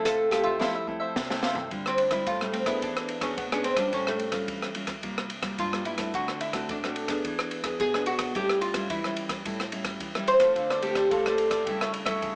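This samba and choro piece, cut from a longer work, carries a bittersweet, yearning mood in a straight 4/4 feel. An up-front, woody oud with plectrum-plucked double strings leads the melody, moving into a fretless, deep-toned solo from 1.7 seconds that runs nearly to the close. Beneath it, a fingerpicked classical nylon-string guitar supplies warm accompaniment throughout. A crisp, bright cavaquinho adds picked accompaniment at the opening and returns near the end at 10.6 seconds. An open jazz kit in a studio room plays a fill before the solo, with dark cymbals, a high-tuned snare and a boomy kick, while light reverb and a small-speaker character lend the whole a compact, intimate sound over a progression of seventh chords.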